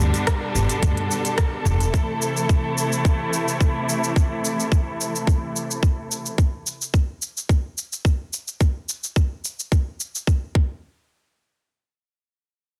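Set in light reverb under a dense, heavily limited modern master, this mystical, meditative organic downtempo excerpt opens with a lush, bowed symphonic string section playing sustained chords with vibrato and a smooth top, pumping against the sidechain under a filter sweep until 6.3 seconds. A woody, growly pizzicato upright bass pumps beneath it only until 1.9 seconds, as the harmony moves from G to A minor. A tight, up-front electronic kick and a tape-toned organic electronic kit with crisp hats, rim click, shaker, toms and a softly clipped snare, both re-recorded in a large room, carry the groove, the kit through 10.4 seconds and the kick on to 10.7 seconds.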